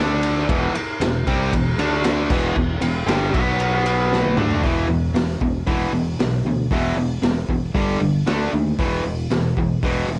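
Over a straight 4/4 pulse, this driving, heavy hard rock excerpt cut from a longer piece opens with an overdriven electric guitar riff, picked and double-tracked, sitting up front with a bright, cassette-tape character. A fingered electric bass plays underneath for the full 10.2 seconds, its direct-and-amped tone bright and growly. The raw garage drum kit enters at 0.2 seconds with crash, hi-hat, ride, kick, snare and toms, and its saturated, gritty sound carries dark cymbals, a punchy kick and a rolled-off top in a small, pumping room. The first part moves through Em, D5 and B5, and a drum fill from 4.1 to 4.6 seconds leads into a second part built on E5, G5 and D5. Light reverb and a home cassette recording give the whole a rough, homemade edge.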